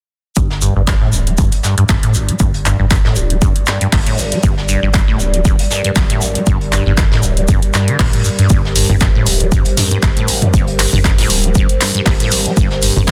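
A trippy, raw acid house groove in G minor at 118 BPM kicks in at 0.4 seconds with everything together: an overdriven, punchy electronic kick and an overdriven analog drum machine of handclaps, hi-hat and toms, plus a warm brushed kit of hi-hat, shaker and snare sitting in the background with its top rolled off. Up front, a squelchy, resonant sawtooth acid bass riff carries phaser, overdrive, 12-bit sampler grit and tape echo, while a round sine sub bass and a dark, detuned pad holding sustained chords both pump against the kick. The 16ths have a light swing, and the mix is dense and heavily limited in this short cut from a longer piece, which runs to 13.1 seconds on a single G minor chord.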